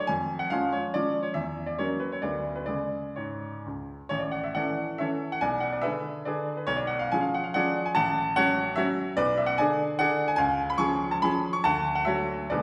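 A bright, brilliant baby grand piano plays alone, in a wistful, capricious romantic dance in 3/4 with dotted rhythms and free rubato, its natural, up-front tone ringing through a wet recital hall heard from further back, and the music moves into a new section at 4.1 s in a short passage cut from a longer piece.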